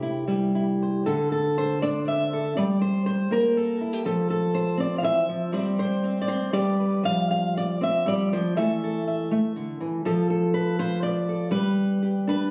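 A fingerpicked steel-string acoustic guitar carries this solo folk piece alone from 0.0 to 12.5 s, its warm, up-front tone spanning C3 to F5 with audible finger squeak along the strings. The mood is hopeful and nostalgic, moving in a rubato 3/4 around 120 BPM. A brief opening on C gives way at 1.1 s to a longer passage that wanders through D5, Gm, F, Gsus4 and G, then Fsus2, Esus4 and Dm/F before settling on G at 11.5 s. The sound has the feel of a phone recording made in the room, placing the guitar in a moderate recital-hall reverb with a club-like ambience. This is a short cut from a longer piece.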